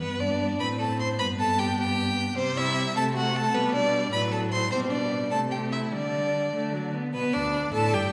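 Moving in a straight 6/8 at 102 BPM to the dotted quarter, this spirited, graceful classical-period string quartet movement in G major is an 8.1-second fragment cut from a longer piece, with a cadence back to G at 7.1 seconds. The first violin carries the melody with smooth, even vibrato, while the second violin sits higher and up front with a focused tone, and the viola fills in a clear, steady accompaniment. Beneath them, the cello's rich, expressive bass is also up front, its soft attacks and portamento bloomed by the wet reverb of a church or concert hall.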